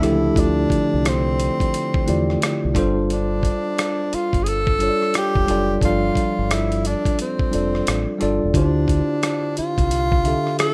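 A swung sixteenth-note groove from a gritty, compressed sampler-style drum kit with thumpy kick, hi-hat and rim click, re-recorded in a large room, carries this sultry, late-night neo-soul R&B excerpt, where a round, dark fingered electric bass sits beneath a bright, clean tine electric piano heard through its built-in speakers, while a breathy, close-miked tenor saxophone takes the jazz-style solo lead with scooped notes over Dm11 and G7sus4 chords in a rough home demo mix with digital ambience.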